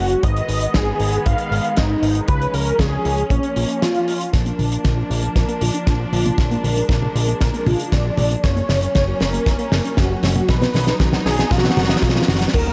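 A thick, bold unison synth lead carries the melody in this danceable, nostalgic italo disco passage, its detuned sawtooth tone colored by vibrato, ensemble chorus and tape echo. From 4.3 seconds a filter sweep moves over the lead while a drum fill runs underneath, and a warbling, lo-fi pluck slips in very quietly with detuned arpeggios and a faint noise layer. A fat, saturated analog bass anchors the low end with a thick, sustained sawtooth-and-square sound, while a muted symphonic string section holds veiled, con sordino chords beneath. The damped 70s drum kit sits up front, with a fat snare, dark cymbals and toms wrapped in gated reverb, joined by a tight, dry kick. The straight 4/4 groove moves from Abm through Db and Bbm into Bb, Gb and B, and the whole mix sits in a small room with light reverb, cut from a longer piece and ending at 12.7 seconds.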